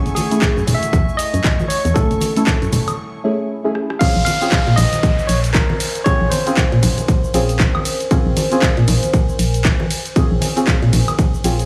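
Warm and hypnotic, this deep house excerpt at 117 BPM in Bb minor swings on an up-front punchy kick, a tape-warm analog drum machine with cabasa, claps, hi-hat, ride, rim click, woodblock and crash, bright soft-handed congas and a hollow organ-like FM bass, while dark chorused and phased chord stabs with 12-bit grit pump beneath a barky overdriven electric piano melody, a warbling lo-fi pad, and a breathy pad and shimmering string machine that end by 3.0 seconds, before a break and drum fill lead into a drop at 4.0 seconds, where the harmony moves from Gbm9 to Bbm9 and a background downlifter sweeps through.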